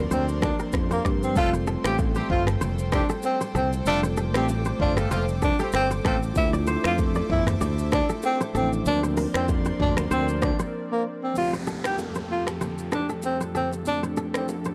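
A mellow tine electric piano with lush chorus, an airy detuned pad, a crisp, ringing fingerpicked kora and a punchy fingered bass that drops out at 10.5 seconds open this sunny, romantic afrobeats excerpt at 96 BPM in F major, joined by an up-front electronic kit with a deep kick and smooth hats, faint distant congas and bongos, a clear, tight horn section with octave doubling from 1.4 to 6.2 seconds, and a breathy, whispered tenor saxophone with vibrato and scooped notes carrying the intimate jazz-style melody, before a background downlifter arrives at 11.4 seconds, all in a dry, gritty small room.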